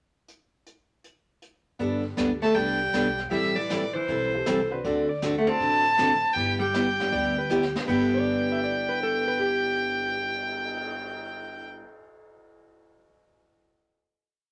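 Swinging and playful, this short western swing piece in G major moves at 158 BPM with a strong swing feel. A brushed drum kit opens with a pickup bar at 0.3 seconds, sweeping and keeping a backbeat on a medium-tuned snare with dark cymbals and a boomy kick, and a fill leads into the closing held chord. At 1.8 seconds the band joins: a bright, full-bodied dreadnought acoustic guitar picks a four-to-the-bar rhythm, a woody pizzicato upright bass plays a two-beat root-and-fifth line with walk-ups, and a very quiet, jangly, detuned upright piano adds syncopated comping in close voicings. Entering at 2.4 seconds, the clear fiddle carries the up-front melody in song-like motifs with light vibrato, shadowed by a clean hollow-body electric guitar playing a harmony line mostly in sixths. From 4.5 seconds a slide lap steel enters with answering blues licks, set in a wet studio reverb over the chords Gadd9, Am7, D7 and G6.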